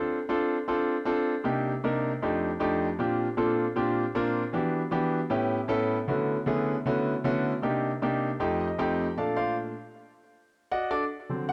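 Sunny and sophisticated, this brief jazz fragment from a longer piece features a lone concert grand piano, clear and up front with deep bass and long natural sustain, moving in a straight 4/4 through rich extended harmonies like Dm7, F13, Em9 and Dmaj13. A short piano fill at 8.4 seconds leads into a new section at 9.2 seconds, where the piano takes a solo over Bbmaj9 and a closing D7b9. Moderate studio reverb and a dark, warm production give the sound a polished, intimate glow.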